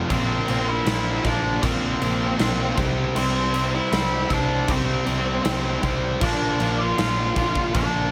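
Lightly reverberant and featuring a huge, up-front arena drum kit with bright cymbals, punchy kick and pumping hall ambience, this bittersweet, anthemic quiet-loud alternative rock excerpt moves at 78 BPM in a straight 4/4 over Bb and Cadd9, as a dark octave-fuzz lead guitar carries the melody above two background overdriven guitar riffs, one biting and warm, the other bright and semi-hollow, while a round, amped hollow-body short-scale bass anchors the low end.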